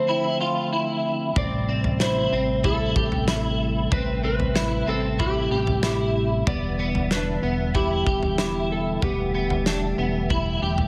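A recital-hall reverb casts a hazy, melancholic glow over this dream pop excerpt, set against a studio ambience. From the opening, a dark, slightly broken-up electric slide guitar carries the melody through delay, over the soft, flute-like chords of a mellow tonewheel organ with chorus vibrato and a touch of key click. A bright, twangy electric guitar at the edge of break-up sits up front with picked arpeggios, thickened by ensemble chorus and delay. A glockenspiel struck with soft plastic mallets adds a dry, bell-like ring in the background, heard at the start and again from 7.7 to 9.2 seconds. At 1.4 seconds a retro, glossy synth bass with a filter pluck enters alongside a loose, small-room indie drum kit with a fat snare, punchy kick and toms. The harmony drifts from Dm9 to Am7 and settles on Em7.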